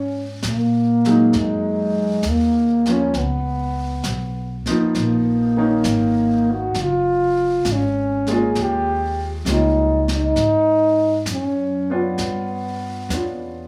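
A dark, breathy trombone sings the melody up front with a soft, whispered attack over a woody pizzicato upright bass, joined at 0.4 s by a brushed jazz kit with a high-tuned snare and hi-hat and at 1.1 s by a natural-toned baby grand piano, shaping a tender, late-night swinging jazz ballad in a moderate large-studio reverb, taken from a longer piece.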